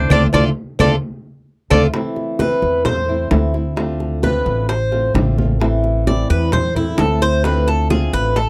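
A dry, close 1970s-style studio sound frames this sultry, warm Cuban son and guajira in A minor at 131 BPM, where a clear, punchy vintage clarinet states a brief melody over a band accent and woody claves until 1.8 s, then a bright, metallic Cuban tres with double strings takes a picked solo from 1.9 s over Dm7 and Am chords, backed by a dark fingerpicked flamenco guitar with finger squeak, a thumpy gut-string upright bass up front, thick-skinned low-tuned congas, and round, saturated cowbell and bongos in the background.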